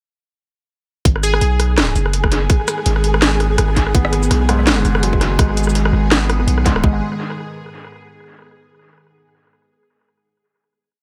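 A half-time drum and bass beat at 166 BPM in G# minor, swung on the sixteenths, drives this short, tense, cinematic piece. A tight electronic kick and a sparse kit of cracking snare, rim, shaker and metallic closed hats sit up front, the kit touched with tape echo, over a deep, sine-toned 808-style bass whose long, tube-saturated notes are chopped into phrases. A bright, punchy plucky unison lead flashes a brief catchy phrase at 1.2 seconds; as it fades, a grainy, flickering granular texture holds a high note, and a string-like bowed drone with vibrato, phaser and sidechain pumping sustains chords in the background. From 3.9 seconds a soft, felt-muted upright piano loops a 12-step arpeggio that drifts against the bar, until the drop gives way to a final chord at 6.8 seconds, all in an echo-heavy mix with light digital ambience.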